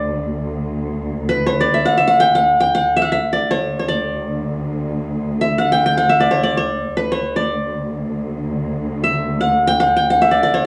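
A bright, plectrum-plucked qanun leads up front, its triple strings carrying a festive melody between B4 and G5 in D maqam rast, in free time and tuned to A4 = 443 Hz. Beneath it, a dark, lush cello section holds a bowed drone on D2 with expressive vibrato and a smooth top. This 10.7-second excerpt from a longer Arabic maqam ensemble piece sits in a small room with moderate reverb.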